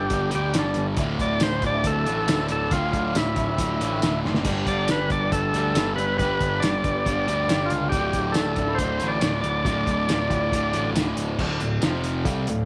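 Light reverb and a small-room ambience frame this gritty, swaggering classic rock excerpt, cut from a longer piece in a straight 4/4. Up front, an overdriven tonewheel organ carries the melody with a thick tone, key click, vibrato and third-harmonic percussion, its line touched by slapback echo until 10.9 seconds. Two overdriven, picked electric guitars share the riff: a bright, cranked stack tone sits over a sludgy one in the background. Beneath them, a round, punchy fuzz bass drives the low end. The cloth-damped drum kit thuds close to the listener with a fat snare, tight kick, muffled dark cymbals, hi-hat and tambourine, adding a fill at 4.2 seconds. A very quiet, woody, slightly detuned upright piano fills out the accompaniment and slips in a brief fill of its own at 3.6 seconds, as the chords move between G and Dmadd9 before a closing turn to Dm and F5.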